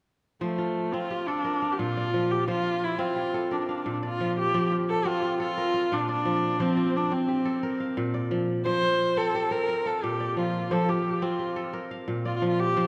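West African traditional music in a straight 12/8, this short excerpt cut from a longer piece feels joyful and flowing. A bowed viola, played by a single musician, carries the melody with vibrato and a smooth, even, somewhat nasal and boxy tone. Alongside it, a fingerpicked kora spins bright, crisp arpeggios that ring out across a broad range. Both parts sit up front and play together from 0.4 s to 12.9 s, while the harmony alternates between F and Bb throughout. A wet church reverb with a long 3.1-second decay surrounds the performance, lending it a spacious, resonant hall atmosphere.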